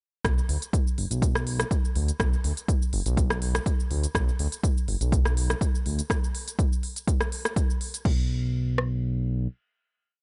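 A dry, close mix with a dulled top end carries this hypnotic, driving afro house piece in B minor at 123 BPM: a punchy four-on-the-floor kick and rim click from a small-room deep house kit sit up front, while the same kit's softer layer of programmed shaker, closed and open hats, rim backbeat and crash fills in behind, and a dark, smooth sawtooth-and-square synth bass glides through a syncopated riff between F#1 and D2 with sidechain pumping, the drop running from 0.2 s to 8.1 s before the bass sustains a final note until 9.5 s.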